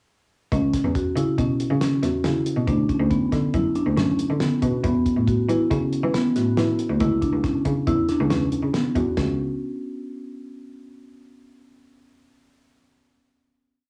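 Set in an uneven 5/4 at 139 BPM with a straight feel, this short, whole progressive instrumental piece drives forward with a brooding cast in C# phrygian. A cloth-damped, thuddy acoustic drum kit holds down the 5/4 groove on hi-hat, kick, snare and ride, with a fat snare, tight kick, dark cymbals and a rolled-off top, sitting a little behind the other parts and coloured by cassette tape. Up front, a single bowed cello plays a syncopated bass riff from C#2 to E3, its tone rich and intense with vibrato and a smooth top. Beside it, a marimba struck with medium mallets repeats an arpeggiated ostinato between B3 and F#4, warm, dark and smooth, also carrying a cassette tape colour. The harmony moves through C#m7, D6, Esus4 and C#m before all three parts stop by about 9.4 seconds, and a final note rings out until 11.3 seconds in the light, small-room reverb of a home cassette recording.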